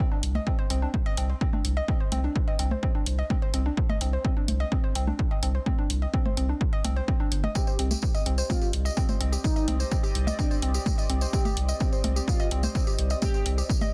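Melodic techno with a dark, melancholic mood, built on a punchy, tape-warm kick and a round, deep analog bass with tube saturation, while electronic hi-hats and congas pump under sidechain and a woody, wave-folded pluck spins arpeggios through chorus and tape echo over a Cmadd9 chord. Near 7.5 seconds a bright, detuned resonant pad with a slow attack and a filter swell rises in the background, joined by a smooth, expressive sawtooth lead carrying vibrato, analog chorus and digital delay, plus a jingly acoustic tambourine. The mix is dry, dense and heavily limited, and the clip is cut from a longer piece.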